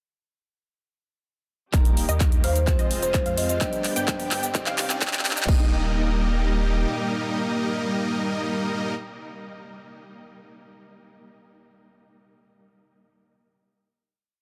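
A huge, detuned supersaw riff stands out in this triumphant, euphoric festival progressive house piece in Eb major at 128 BPM, its dotted-rhythm chords pumping against a punchy four-on-the-floor kick, a deep saturated sub bass, and a big-room kit of metallic hats, claps, shaker and crash, all driving a build from 1.7 to 5.5 seconds under filter sweeps, a drum fill and a very quiet riser. A woody, hollow kalimba adds short answering phrases with dub echo, while a lush unison pluck doubles the chords, a clean electric guitar sits in the background with held, syncopated chords, and a dark, reedy string section sustains a distant pad. The drums drop out at 5.6 seconds, leaving the harmony to ring into a final Eb chord from 5.5 seconds, all within a dense, heavily limited master with light digital ambience.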